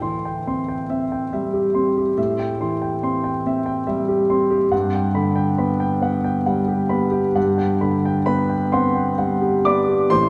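Moving in a slow, rubato 6/8 that sways loosely in dotted-quarter pulses, this neoclassical minimalist piano excerpt unfolds with an intimate, melancholic hush. A lone grand piano carries everything, spanning from deep A1 in the bass to D6 in the upper register, its tone warm yet slightly boxy, with long sustain and the audible noise of its action sitting close and up front. The harmony rests on Am7 before shifting to Gmaj7 at 4.7 seconds, a small, wistful turn that colours the brief passage. A wet church reverb with a 3.3-second tail surrounds the instrument, lending a hall-like depth, while the recording's high end stays soft and rolled off. Cut from a longer piece, the fragment lasts just over ten seconds.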